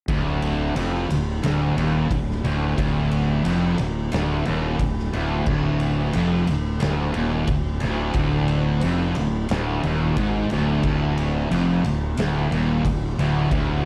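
Heavy and sludgy, this short stoner and doom metal excerpt stacks three low-riffing guitars, a bright, double-tracked overdriven one, a compressed fuzz one and a thick fuzz one, all sitting in the background behind an up-front, overdriven fingered bass and an oversized, low-tuned acoustic drum kit with a punchy kick, dark cymbals and a gritty, saturated, pumping big-room sound, all in a dark production with light small-room reverb.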